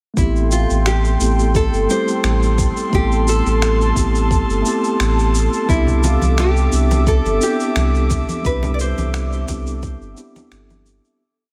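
A relaxed 87 BPM groove in 4/4 with a lightly swung sixteenth feel opens this short, smooth sunset chillout piece in A minor, built from a soft, deep electronic kick and a gritty, tape-warm lounge beat of shaker and finger snaps set in studio ambience. A round sine sub bass sits up front in a dotted rhythm, while a mellow tine electric piano holds rootless chords with syncopated pushes through a digital delay. A bright, fingerpicked nylon-string guitar carries a motif-based melody in song phrases, its finger squeaks audible, until about 9.4 seconds. An airy, breathy pad with a detuned noise layer and chorus sustains chords above, moving from Am9 to Cmaj9 at 5.7 seconds. Ringing, low-tuned congas join in the background at 5.9 seconds, and the whole piece fades out from 7.5 seconds under light reverb and digital ambience.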